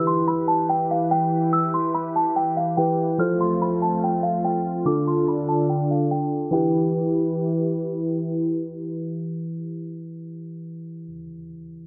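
Hip hop at 144 BPM in a half-time feel and E phrygian, dark and cold, where a small, bell-like celesta carries a delicate melody until 7.7 seconds over a barky, clean tine electric piano heard through a combo amp and a smooth, warbling analog pad with lush chorus, the parts filtered and set in light reverb while a filter sweep runs through the first 6.5 seconds across chords moving from Em through F and Dm back to Em.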